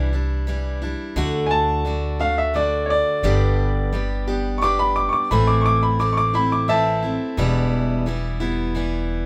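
A sunny, heartfelt honky-tonk and classic country waltz in G major at 87 BPM, this excerpt features a bright, up-front upright piano carrying the melody from 1.5 to 8.0 seconds with audible action noise, over a full-bodied picked dreadnought acoustic guitar and a woody, dark pizzicato upright bass, all in light reverb as the chords move from Cadd9 through D, G and Am to Em.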